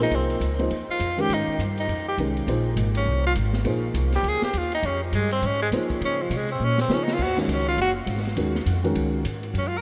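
Cool and intense, this fast modal jazz fragment swings at 204 BPM, cut from a longer piece, with a bright, forceful tenor saxophone soloing up front with vibrato over a dark, mellow upright piano whose slightly detuned strings and audible action noise give it an intimate feel. A thumpy, woody pizzicato upright bass sits forward in the mix beside an open acoustic drum kit with dark cymbals, a high-tuned snare and a punchy kick, which plays a fill from 6.6 to 7.2 seconds as the harmony moves from Fm9 through Bbm9 to Ebm11. A huge ambient reverb places the group in a vast, echoing space.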